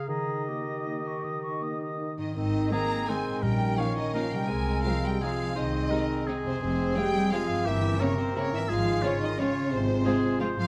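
A festive, elegant orchestral ballroom waltz in 3/4 with a supple, rubato sway, cut from a longer piece. It opens with a bright, ringing harp playing arpeggios beneath a clear oboe, a clear clarinet in the background and a mellow, hollow silver flute, while a mellow bassoon with light vibrato supplies accompaniment and a dark, distant French horn section holds sustained chords from 0.5 seconds. At 2.2 seconds a rich violin section takes the expressive, vibrato-laden melody over a smooth, even cello section on the bass line. A soft-attacked double bass section, a very quiet second violin line and a lush viola section with portamento fill out the strings. A round, soft-malleted timpani stroke sounds briefly at 3.4 seconds as the harmony moves through Eb7/Bb toward Fm and C7/G. The close, detailed sound sits in a moderate scoring-stage reverb that gives the horns their roomy depth.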